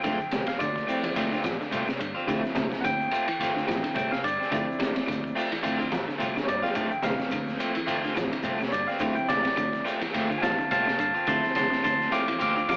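Afrobeat groove at 107 BPM in D minor, cut from a longer piece, with a hypnotic, driving feel and a light swing on the sixteenths, all resting on a single Dm7 chord. A bright, barky tine electric piano, lightly overdriven through a combo amp, sits up front and takes a solo across the whole 12.8 seconds. Beneath it, a crunchy breakbeat kit with a high-tuned snare, tight kick and dark cymbals sounds gritty and saturated, its top rolled off, and it breaks into a short fill at 6.3 seconds. An electric guitar at the edge of break-up adds picked stabs with tremolo, while a clean, twangy guitar picks arpeggios in the background over a round, punchy fingered bass. Very quiet woody claves join ringing high-tuned congas played with soft hands and a grainy shekere to fill out the percussion, the congas and shekere sitting in the background. The band plays live in one stone room with moderate reverb, and the whole mix has the sound of AM radio.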